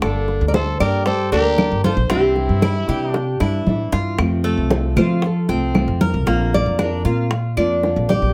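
A relaxed, danceable stretch of Cuban son and guajira opens with a full-bodied nylon-string guitar melody, fingerpicked with audible finger squeak, over a second nylon-string guitar in accompaniment and an up-front upright bass that sounds dark and thumpy. Soft-handed congas, tight high-tuned bongos and woody claves sit in the background, while a raspy, growling trumpet adds a gritty second line until 3.6 s. A metallic Cuban tres with double strings joins with picked arpeggios at 0.8 s, and after a drum fill the lead guitar takes a solo from 4.2 s, all set in a moderate small-room reverb.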